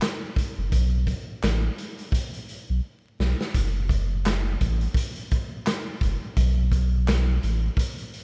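A swung 85 BPM boom-bap hip-hop groove in 4/4 drives this gritty, dark excerpt, where a raw, saturated garage drum kit of kick, snare, hi-hat and handclaps sits up front with a punchy kick and rolled-off top, a round sine sub bass enters at 0.6 seconds beneath it, and a drum fill at 2.8 seconds leads into the second section of a rough, crackling demo mix with little reverb.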